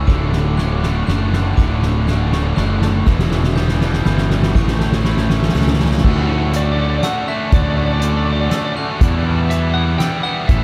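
A dreamy, reverb-soaked haze opens this cinematic post-rock passage in D major at 121 BPM in 3/4, with a fuzzy, round fingered bass and a soft-mallet drum kit with a fat snare, boomy kick and dark cymbals sitting up front. From the start a bright, tight distorted guitar and a biting overdriven guitar play riffs, while a very quiet twangy clean guitar traces arpeggios and a bell-like glockenspiel with brass mallets does the same through a diffuse delay, all over Dmaj7, Em and A chords during a build-up with a drum fill. At 6.6 seconds a lightly driven, compressed lead guitar enters with a soaring melody wrapped in ambient delay.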